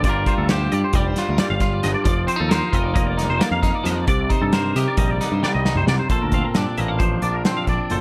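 From the first moment, a bright, picked clean electric guitar sits up front with a fingered, twangy second guitar tracing arpeggios above it, both washed in plate reverb and the higher one shimmering with ensemble chorus. This intricate, wistful math rock and midwest emo passage, cut from a longer piece, moves at 267 BPM counted in eighths, in a straight 9/8, tuned to A4 = 441 Hz. An overdriven, growling picked electric bass, direct and amped, anchors the low end, while a loose acoustic indie kit with a punchy kick, a medium-tuned snare, hi-hat and toms sounds close in a small, pumping room. The harmony moves from Gm7 to F7sus4 and Cm7 before a drum fill from 5.4 s leads into a new section at 6.1 s on a lush Bbmaj9. Light reverb and a dark, warm production round out the sound.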